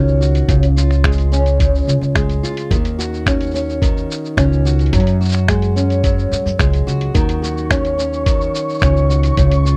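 A fingerpicked old ladder-braced acoustic guitar, boxy and up front with audible finger squeak and a touch of tape echo, spins out arpeggios over a woody, gut-strung pizzicato upright bass from the first second of this intimate, wistful folktronica excerpt in Eb minor at 108 BPM. A muffled, pitched-down sampler-style kit of finger snaps, hi-hat and shaker joins almost at once, and a thumpy electronic kick enters at 0.5 s as the chords move through Db, Ebm7 and Gbsus2. At 7.4 s a faint, flickering granular texture, detuned and sustained high on Db6, drifts in with its own reverb against an otherwise dry, close 1970s-style studio sound.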